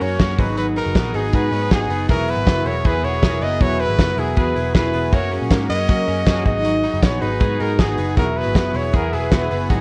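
A clear, close-miked trumpet with vibrato and slapback echo carries the melody up front in this restless, wistful slice of jangly indie pop, backed by a shimmering picked twelve-string acoustic guitar, twangy arpeggios from a chorused twelve-string electric guitar, and detuned, airy analog keys with a filter sweep. A foam-muted, round electric bass and a loose, small-room drum kit with a fat snare and tight kick drive the straight 4/4 groove, while a very quiet, crisp group handclap joins at 5.5 s. Light studio reverb and worn cassette tape with warbly pitch drift give the whole excerpt a faded, nostalgic sheen.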